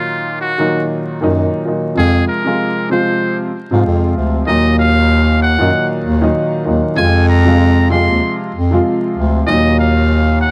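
A buzzy, metal-muted trumpet sings a jazz-style melody with light vibrato, scooped notes and delay over a dark, woody, slightly detuned upright piano whose action noise is audible, joined at 1.2 seconds by a mellow, close-miked bass clarinet holding down the low end in this gritty, reflective boom-bap hip-hop excerpt at 96 BPM in Eb dorian, swung over Ebm and Fm chords and set in a small room with light reverb and vinyl crackle.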